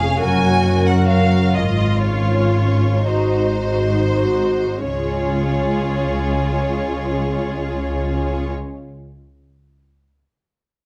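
A rich, focused first violin section carries the tender melody of this slow, rubato string-orchestra movement in a lilting six-eight, with smooth second violins, lush violas, a dark, woody cello section set back in the background and a bowed double bass section underpinning it all with vibrato, the whole easing to a slower pace through its first 4.8 seconds before settling on the home chord, in a dark, warm, moderately reverberant large-studio sound.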